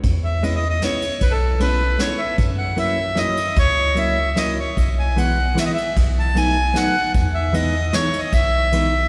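Whirling and nostalgic, this short fragment of a musette waltz moves at 152 BPM in 3/4 in E major, with a reedy, up-front accordion carrying the melody over a dark, clean hollow-body electric guitar playing fingered accompaniment. A deep, punchy sine sub bass with a pitch-drop attack anchors the low end, while a soft brush kit adds natural kick, snare and ride. The harmony moves from E6 through F#7, E/B and B7 to Emaj7, all bathed in a long cathedral reverb that gives the ensemble the spacious glow of a church or concert hall.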